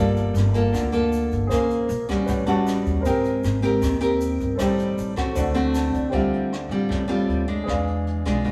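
A moderate stone-room reverb surrounds this short bossa nova excerpt, played live by a band in one room, with a smooth, melancholic mood in G minor at 156 BPM. Up front, a bright, full-bodied nylon-string guitar is fingerpicked with a deep classical tone, carrying the harmony through rich chords such as Gm9, A13 and Abmaj9. A woody, thumpy upright bass plucked on steel strings sits low underneath, while a polished grand piano with short sustain adds present accompaniment and slips in brief fills at 2.3 and 5.4 seconds. From 0.2 seconds a natural-sounding brush kit with a boomy kick, hi-hat and rim click joins, alongside a grainy, close and dry egg shaker in the background that drops out at 6.1 seconds. At that point the music moves into a new section, shifting through Dm11 to E7b9.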